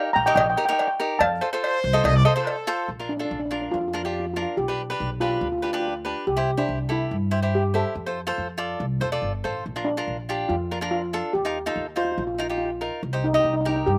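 A shimmering steel pan carries the melody in this sunny, carefree calypso, its mellow, band-limited tone coming from soft rubber sticks and touched with a vintage slapback echo. The tune moves at 142 BPM in a straight 4/4 in Bb major. A crisp, picked cavaquinho sits up front as accompaniment, and a woody pizzicato upright bass on steel strings holds down the low end. A metallic cowbell with its own slapback echo sounds in the opening seconds until 2.6 seconds, while a brilliant, punchy horn section adds a tight pop-style second line from 1.6 to 2.9 seconds. The harmony passes from Eb and F into a longer stretch built on Bb, G/B, C, F, Bb, Ebsus2 and Cm, captured dry outdoors with little reverb in a clip cut from a longer piece.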